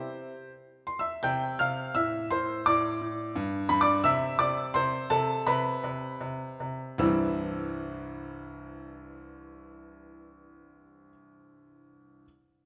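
In a rubato 2/4 pulse of about 76-88 BPM, this classical-period sonatina in C major unfolds with a serious, restless mood and broadens noticeably between 3.4 and 7.0 seconds. A bright grand piano plays alone, sitting up front with a brilliant, open tone and short sustain as it spans C2 to G6 over harmonies moving through C, A minor and G. A wet recital hall reverb surrounds the playing in this brief cut from a longer piece.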